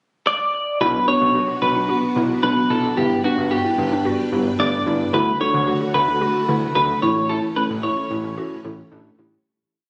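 A clean, picked electric guitar sits up front with a hooky, motif-based melody coated in lush chorus and delay, leading this cool, driving synth-pop piece in B minor at 111 BPM. After a pickup bar, at 0.8 s a fat, pulsing analog bass, muted felt-like synth keys playing eighth-note triads, a warbling, dusty lo-fi pluck ostinato in the background and a shimmering string-machine pad join over a Bm, G, D, A progression. A moderate plate reverb and the roomy character of a phone recording colour the compressed mix until a fade-out that begins at 7.3 s.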